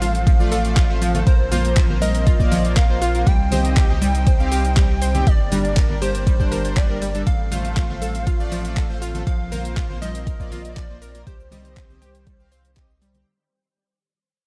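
Driving and emotional, this progressive house drop is cut from a longer piece and begins fading out at 5.3 seconds. An overdriven, deep electronic kick sits up front from 0.3 seconds, layered over an overdriven deep house kit of cabasa, handclaps, hi-hat and ride cymbal, with ringing, softly played acoustic congas pumping in the background. A thick, saturated sub bass with a fast attack anchors the low end, while a lush supersaw pad holds sustained chords behind everything. A round, warbling analog pluck spins chorused arpeggios with delay, and a glossy, retro polysynth adds chorused stabs with filter sweeps. Above them, a punchy, catchy unison lead carries the melody through delay, most parts breathing with sidechain pumping in a dark, dry production.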